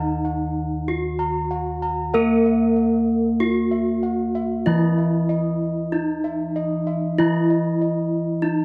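A slow, straight 4/4 pulse at 48 BPM sets a hypnotic Javanese gamelan mood in this short section, cut from a longer piece and tuned to A4 = 439 Hz. Up front, a bronze metallophone carries the melody with a bright, airy ring, its paired tuning producing shimmering beats. A second metallophone, a little louder and an octave lower, plays the accompaniment with a bright horn-mallet attack. High bossed gongs spin quiet arpeggios with a round, vintage, band-limited tone and fall away at 8.2 seconds. Below them, bass gongs reach from deep low notes into the middle range with a beating, boxy small-room character. A wet recital-hall reverb and a dark production wrap the whole ensemble in a resonant halo.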